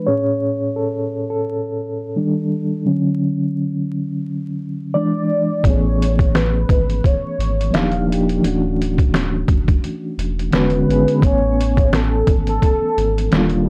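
A dry, gritty recording with transformer saturation, vinyl crackle and a light reverb frames this mellow, cosy lo-fi hip hop fragment, cut from a longer piece. A reedy electric piano opens alone, its fast tremolo heard through built-in speakers and softened by cassette tape and a low-pass filter, with a filter sweep running across its solo opening as it moves through major-seventh chords. A velvety synth lead, sawtooth and detuned in unison with vibrato and chorus, enters at 5.0 seconds, carrying the melody through tape echo. At 5.6 seconds a deep, thick sub bass with a sustained triangle tone arrives with a compressed, pitched-down trip hop kit in sampler style, its muffled, thumpy kick, medium-tuned snare and hi-hat sitting up front with a gentle swing. In the second half the harmony takes on ninth and thirteenth chords before settling back on A major seventh.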